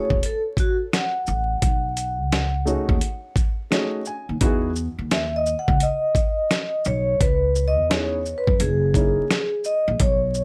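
Vinyl crackle and light reverb frame this nocturnal, smoky jazz-hop fragment, cut from a longer piece, which moves at 86 BPM with a swung 16th-note feel over chords that drift from F#m7 through Emaj9 to F#13. A metallic, ringing vibraphone played with medium mallets carries the melody throughout, its slow motor vibrato trailed by analog delay, while a dark, mellow upright piano with audible action noise and short sustain accompanies, adds a brief fill at 3.4 seconds and stops at 9.2 seconds. Underneath, a woody pizzicato upright bass and a gritty, compressed sampler-style drum kit with a thumpy kick, medium-tuned snare, hi-hat and shaker hold the groove up front.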